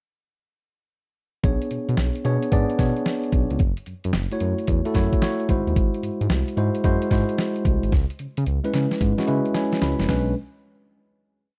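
A hard-swung drum-machine beat at 111 BPM drives this confident, punchy new jack swing R&B piece in B dorian, with a gritty, pitched-down sampler-style kit of thumpy kick, medium-tuned snare, toms and hi-hat up front, a smooth sawtooth-and-triangle synth bass bouncing through a swung synth-funk line with muted ghost notes, and a clean tine electric piano stabbing syncopated drop2 chords from Bm69 through F#m7, G#7b13 and C#m7, all in a dry, close 1970s-style studio sound, before a drum fill at 7.9 seconds and a piano fill at 9.0 seconds lead into a final Bm69 chord at 10.1 seconds.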